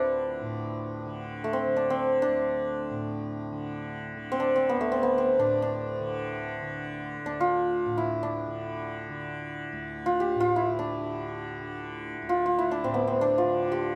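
In free time, with a floating, unmetered pulse, this Hindustani classical passage unfolds in raga Bhimpalasi on D, carrying a solemn, longing mood. The hammered santur carries the melody between A3 and G4, its ringing, shimmering strings placed up front in the sound. Beneath it, a softly plucked tanpura holds a buzzing drone from D2 to D3, sitting well below the santur in level. Both instruments play throughout the 14 seconds, and this fragment is cut from a longer piece. Close, detailed microphones and little reverb keep the acoustic tone intimate and present.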